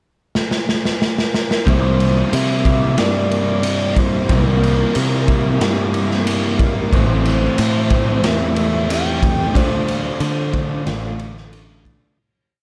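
A straight, big groove in 4/4 opens with a punchy, gritty drum fill from 0.4 seconds, the raw garage kit sitting up front in a pumping stone room, before a picked bass with a dotted figure, two overdriven guitars and a twangy, barely audible arpeggiated guitar all arrive at 1.7 seconds. In this hazy, blissful piece of shoegaze and dream pop rock, one overdriven guitar lets ringing chords bloom through reverse reverb while the other strums in the background with whammy-bar dips and analog chorus, all over chords moving from C7sus4 to Am7 and Dm7. Above them a breathy, flute-like synth lead with vibrato, chorus and slapback echo sings sustained, motif-based phrases, and the dark, small-room production fades out from 9.6 seconds.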